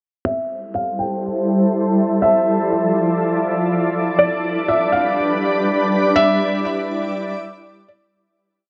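Atmospheric cloud-rap hip hop at 122 BPM in a half-time 4/4 feel, this short, ethereal A minor piece opens at 0.2 s with a felt-muted upright piano repeating a sparse, intimate melody like a sampled loop, softened by a low-pass filter and digital delay. From 1.0 s a detuned, granular pad sits up front with an octave-up shimmer, chorus and its own reverb, holding sustained chords over Am7, Dmadd9, G and Em7. The whole breakdown rides a filter sweep inside a huge, spacious reverb before fading out from 6.2 s.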